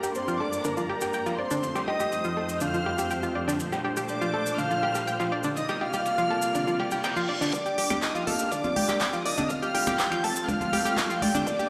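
Bittersweet and emotional, this progressive house passage in a straight 4/4 is cut from a longer piece and moves through Gm, F, Bbmaj7 and C7sus4 before returning to Gm and F. A soft, octave-layered synth lead carries the melody with a round, triangle-and-sine tone coloured by chorus, phaser and digital delay, while a dark, woody chamber violin section plays a second line above it with sidechain pumping and delay. Beneath them a muted, veiled symphonic string section holds sustained chords, and an up-front analog pluck spins bright, filter-swept arpeggios through chorus and delay, with a grainy cabasa and a very quiet, gritty breakbeat-style kit of hi-hat and snare ticking along until 7.5 s. A very quiet reverse cymbal and riser enters at 6.8 s, and at 7.5 s the build-up begins as a deep house kit with smooth hats, finger snaps and handclaps arrives alongside a deep, background electronic kick, ringing woodblock and congas, and a tight, very quiet sequencer bass. 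The whole mix sits in a lush hall reverb and sounds as if played on a big sound system in a bare stone room.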